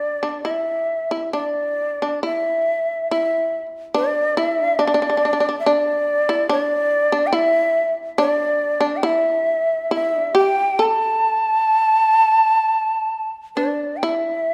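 Japanese traditional chamber music, calm and austere, moves in a free, rubato 4/4 at roughly 62-73 BPM across this short excerpt cut from a longer piece. A breathy, end-blown bamboo shakuhachi carries the melody up front, pairing chiff and a crisp attack with rolled-off highs and expressive vibrato. Beneath it, a plectrum-plucked, fretless shamisen adds a buzzing, percussive second line, both voices sounding throughout within a moderate concert-hall reverb.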